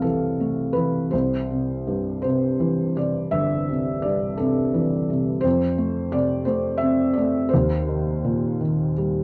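Heard through worn, warbly old cassette tape with pitch drift and a moderate studio reverb, this short passage cut from a longer classical piece has a calm, peaceful mood. A felt-muted upright piano plays alone and up front, its tone soft, dark and intimate, in a slow, lyrical 6/8 at about 56 BPM in C major with free, rubato timing. The harmony drifts from Fmaj7 to C6 and back to F before moving to an Eb chord near 7.5 seconds.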